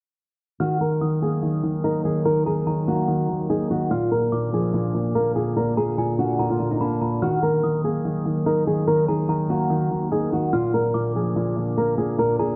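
Hip hop at 145 BPM in a half-time feel, this ominous, dark excerpt in Eb harmonic minor sets a fingerpicked flamenco guitar melody up front over a deep, mellow concert grand piano accompaniment, with the harmony moving between Ebm and Bb. A metallic, inharmonic FM bell rings a bright second line with chorus and tape echo, while a warbling, nostalgic tape-like pad enters at 1.4 s with slow-attack sustained chords in the background. The dry, gritty hardware recording sits in studio reverb and is softened by a low-pass filter.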